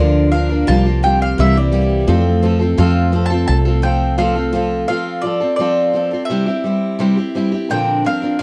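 A straight 4/4 pulse at 86 BPM carries this nostalgic acoustic folk excerpt in F major, where a woody mandolin leads the melody over an up-front steel-string guitar with audible finger squeak, a bright, shimmering twelve-string guitar playing arpeggios until 5.0 seconds, and a dark, round fretless electric bass with analog chorus until 4.8 seconds, all captured in a dry, close 1970s-style studio sound.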